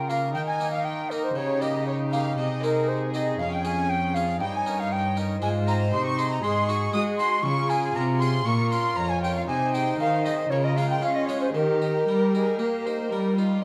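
A mellow, pure concert flute with vibrato carries the melody of this festive, brilliant baroque-style concerto movement at 118 BPM in 4/4, tuned to A4 = 438 Hz, joined by a gut-string chamber violin section on melody in the background and a second, close violin section on a higher line, while a dark, nasal viola section and a bright, plucked Flemish-style harpsichord supply accompaniment over a rich, up-front cello section on bass, all captured with close, detailed microphones in a moderate recital-hall reverb in this 13.6-second excerpt cut from a longer piece.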